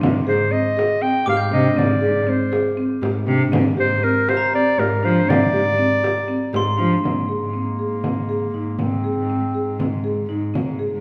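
Contemporary instrumental chamber music in a restless yet hopeful 7/8, this brief passage is cut from a longer piece. A marimba played with soft mallets spins woody, mellow arpeggios over a dark, floating bowed cello line played sul tasto by a single player, while a small frame drum adds bright, soft-handed percussion beneath them. From 0.3 s a warm, classical-style clarinet carries the solo melody up front, ranging from its low register high into its upper one. Between 1.3 s and 7.3 s a glockenspiel struck with brass mallets adds a faint, bell-like shimmer above the ensemble. The harmony rests on a Csus2 over Ab before settling onto a plain Ab chord, and the whole ensemble sounds from further back in a reverberant recital hall.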